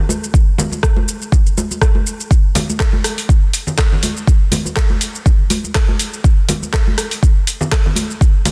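A deep, up-front electronic kick drives this hypnotic, warm house groove at 122 BPM in 4/4, with a light 16th-note swing, running from 0.3 to 8.3 seconds. Around it, a layered, overdriven deep house kit of handclaps, hi-hat, rim click and shaker sits lower in the mix, re-recorded in a small room, while close, dry congas add a ringing, medium-tuned acoustic colour. The short cut from a longer piece has a digital ambience and a dense, heavily limited modern master.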